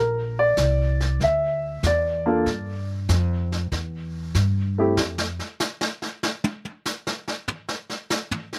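This dry, close recording has little reverb and was made outdoors, giving a short, relaxed, swinging jazz piano trio fragment at 96 BPM in 4/4. An intimate baby grand piano, with audible action noise and a slapback echo, carries the melody over Bbadd9, Fsus2 and a rootless C chord, while a woody, thumpy pizzicato upright bass sits up front. A brushed drum kit with a medium-tuned snare, boomy kick, hi-hat, toms and its own slapback echo enters at 0.6 seconds and takes a solo from 5.0 seconds to the end at 8.6 seconds.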